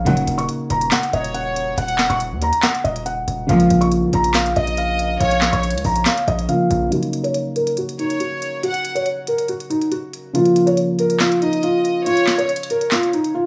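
This short cut from a longer piece has a dry, gritty sound with a touch of studio ambience. It is a dark, melancholic trap beat in a half-time feel. A felt-muted upright piano carries the melody up front, soft and intimate with audible action noise and a boxy, low-pass-filtered tone. Beneath it a dark concert grand piano plays mellow accompaniment with deep bass, also filtered. A hard-hitting 808-style bass with a punchy sine body, noise layer and fast attack decays under the opening half, then stops at 6.9 s, where a filter sweep carries the second half to the end. A crisp electronic trap kit of sharp snare, hi-hats and handclaps sits prominently throughout, while a bright, earthy chamber violin section adds a bowed second line with light vibrato and analog delay, and a lush symphonic string section lands brief, close stabs at 0.1 and 3.5 s.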